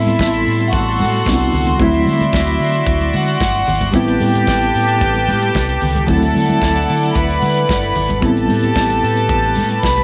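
Disco at 112 BPM in A dorian, this driving, danceable cut from a longer piece rides a straight 4/4 feel over a loop of Am9 and D9 chords. A chamber string section carries the second line up front, its bowed ensemble tone soft in attack, pure and floating, while a clear studio string section holds sustained chords alongside it. A reedy, worn electric piano, slightly out of tune and heard through its built-in speakers, fills the accompaniment with a fast tremolo. An overdriven fingered electric bass gives a punchy, amped low end. From 0.1 seconds a modern studio drum kit enters with a medium-tuned snare, hi-hat and kick, mid-forward with a rolled-off top, joined by bright, high-tuned congas played with hard hands in the background. Light reverb and small room ambience tie the parts together.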